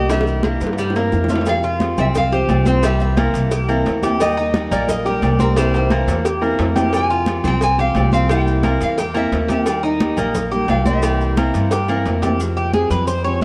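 Latin Cuban son with a guajira lilt, this danceable, sultry excerpt moves at 176 BPM in F harmonic minor, with a woody, thumpy upright bass up front beside a metallic, double-strung Cuban tres whose picked arpeggios carry tape echo and take a brief solo from 12.4 seconds. A bright, fingerpicked nylon-string guitar plays the melody until 12.0 seconds over a second nylon-string guitar's deep classical accompaniment with audible finger squeak. Ringing timbales and agogo bells, soft-handed congas and grainy maracas sit in the background alongside very quiet high-tuned bongos and cowbell, with drum fills at 0.1, 5.6 and 11.7 seconds. The sound is bathed in plate reverb and carries the warble and pitch drift of worn old cassette tape.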